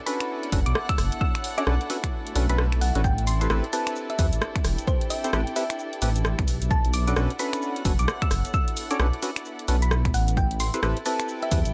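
Light reverb frames this moody, skippy stretch of two-step UK garage, cut from a longer piece and set at 131 BPM with swung sixteenths. A dark, detuned saw bass sits up front, deep and rumbling with sidechain pumping, under a punchy, tape-warm electronic kick and an analog drum machine of bongos, finger snaps, hi-hat, rim click and shaker. A hollow, organ-like stab with chorus and dub echo punctuates the groove, while a round, tine-like synth pluck carries the melody, also treated with chorus and dub echo. Behind them, an intimate chamber string section, bowed sul tasto with light vibrato, adds texture with its own sidechain pumping, and a very quiet, ethereal pad holds airy sustained chords through a phaser. The harmony moves between Bm9 and Am9, and an electronic swell sounds in the background from 2.3 seconds as the kick briefly drops out, returning at 3.0 seconds.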